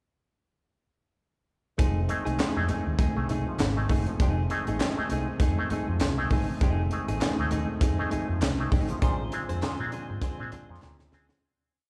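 A heavy on-the-one funk beat from a crisp, up-front fusion kit with a high-tuned snare and tight kick drives this energetic funk piece in 4/4 with a light sixteenth-note swing, as a dark, foam-muted fingered bass plays a syncopated riff with ghost notes, a clean, compressed electric guitar picks sixteenth-note rhythm with muted scratches, an overdriven auto-wah clav adds stringy, nasal two-handed stabs, and a soft flute-stop chamber organ holds a background pad, while very quiet congas and barely audible group handclaps join at 2.4 seconds, all in a church-reverb room with a cassette-tape character that fades out from 9.0 seconds into a closing drum fill.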